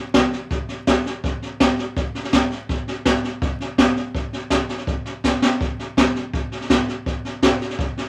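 A jazz brush drum kit opens this short rock excerpt at 0.1 s, its hi-hat, kick drum and snare drum set up front in a small, roomy space. The feel is rollicking and rowdy, driven along at a brisk 165 BPM in a straight 4/4. Brushes play the high-tuned snare, while the boomy kick thumps underneath. A quick drum fill arrives at 5.2 s before the groove carries on to the cut at 8.0 s. Vinyl crackle and a moderate studio ambience lend the acoustic kit an aged, lived-in character.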